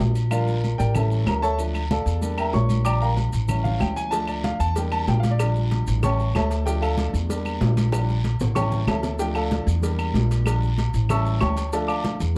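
An up-front grand piano takes a natural-toned solo over a fiery, passionate salsa excerpt at 189 BPM in D harmonic minor, cycling through Bb6, A7, Dm and Em7b5 above a thumpy, gut-strung pizzicato upright bass, while damped congas, grainy maracas, ringing agogo bells and timbales, and woody claves sit in the background, a raspy vintage guiro plays along, round, low-tuned cowbell and bongos join at 4.1 s, and a drum fill runs from 7.9 to 9.2 s inside a dark production with light reverb.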